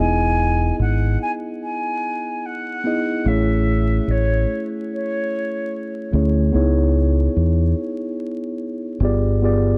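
From the opening, an airy concert flute with plate reverb carries the melody over mellow tine electric piano softened by cassette tape and a round, punchy dub bass in this mellow, nostalgic, swung hip hop excerpt, set in a small room with a dark, warm production and vinyl crackle, before the flute drops out at 6.1 s and the piano and bass carry the chords from Emaj7 through to a closing G7b9.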